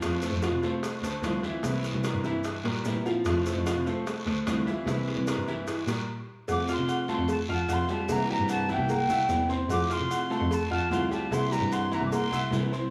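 A roomy studio sound with moderate reverb frames this danceable, warm Cuban son and guajira excerpt, cut from a longer piece. Up front, a bowed cello carries the bass with expressive vibrato and portamento. A dark, fingerpicked nylon-string guitar with finger squeak and a boxy, intimate grand piano playing arpeggios fill the middle, while grainy maracas, a raspy guiro, tight high-tuned bongos and cowbell, and ringing, distant timbales with agogo bells drive the percussion. After a brief stop from 6.1 to 6.5 seconds, an airy silver flute with a crisp attack enters with the melody.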